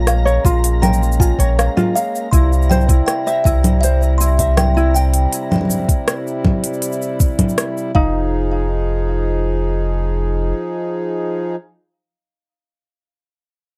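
A dry, close-sounding mix opens this short folktronica fragment in F minor, intimate and wistful at 80 BPM in a straight 4/4. A reedy, breathing pedal harmonium holds sustained chords through to 11.6 seconds, while a thumb-plucked acoustic ukulele plays light arpeggios with delay and a delicate, tinkling music box adds a slightly out-of-tune second line, roughened by vintage 12-bit sampler grit and delay. Underneath, a round sine sub bass sits up front until 10.5 seconds, joined by a soft, tape-warm electronic kick and an organic electronic kit of congas, crisp hi-hat, rim click and shaker, both re-recorded in a small room. A flickering, granular texture with its own reverb glimmers faintly in the background until 5.3 seconds. The harmony moves from Bbm7 to C and settles on Fm7 near the end, leaving the harmonium and bass to carry the closing moments after the drums and plucked parts fall away.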